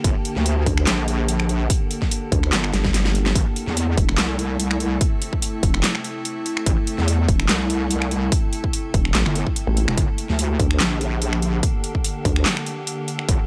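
Chaotic and menacing, this heavy wobble dubstep excerpt moves at 145 BPM in a half-time feel with a light swing on the sixteenths, rooted in A phrygian and shifting from Gmadd9 to Am at 3.4 seconds before returning to Gmadd9 at 10.0 seconds. Two wobbling basses dominate the low end: one heavy, saturated and detuned with a resonant unison growl, treated with chorus and overdrive, and a second, vowel-sweep bass entering at 0.7 seconds whose nasal formant-filtered tone sits mellow and up front, also with chorus and overdrive. A punchy electronic kick and a dubstep kit of finger snaps, handclaps, metallic hi-hats and a huge snare drive the groove, both layered and tape-tinged, with a drum fill between 2.7 and 3.4 seconds. Beneath them, an evolving wavetable pad holds bright, morphing sustained chords with a slow attack, chorus, built-in reverb and sidechain pumping. A digital ambience surrounds the mix, cut from a longer piece.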